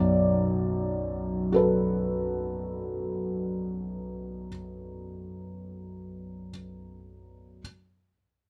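In free time, this brief excerpt of neoclassical minimalist piano in B minor unfolds with an intimate, wistful mood, opening on a Bm7 harmony. A felt-muted upright piano plays alone from 0.0 to 7.6 seconds, spanning B1 to D5 with a soft, mellow tone. It sits up front, with its natural action noise clearly audible, inside a light reverb.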